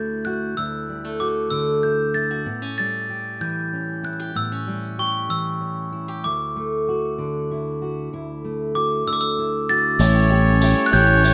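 A ringing, bell-like glockenspiel struck with hard plastic mallets carries the melody throughout this short indie folk excerpt in D major, its slapback echo sitting up front over a full-bodied fingerpicked dreadnought guitar with audible finger squeak, moving slowly at 64 BPM in 6/8 with an anthemic, warm mood. At 10.0 seconds the arrangement builds as the guitar drops out and a soft-attack classical trumpet, a shimmering octave-doubled twelve-string parlour guitar, a dark sul tasto chamber string section in the background, a punchy up-front electric bass and a jingly, dry tambourine all enter. The sound is that of a rough home demo with studio reverb.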